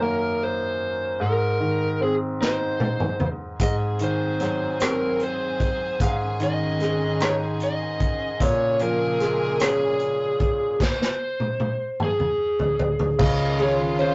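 A six-eight pop ballad in D-flat major, tender and swaying, moving at a slow 50 BPM counted in dotted quarters. An overdriven lead guitar, picked and up front, carries the melody from the start, while a clear, polished baby grand piano supplies the accompaniment beneath it. An acoustic drum kit played with bundle sticks comes in at 2.4 seconds with a fill, its dark cymbals, punchy kick and medium-tuned snare sounding distant and roomy, and it fills again from 10.8 seconds as the chord changes give way to an N.C. passage. A lush, bowed string section with vibrato joins at 3.6 seconds, holding smooth, even chords low in the mix as the progression passes through Ab7, Dbsus2 over Ab and Bbm7. A round, foam-muted fingered electric bass arrives only at 13.2 seconds, landing on a Dbadd9 chord just as this fragment of a longer piece ends. The whole recording has the rough feel of a rehearsal room, with a short, wet booth ambience, tube saturation and a dulled top end.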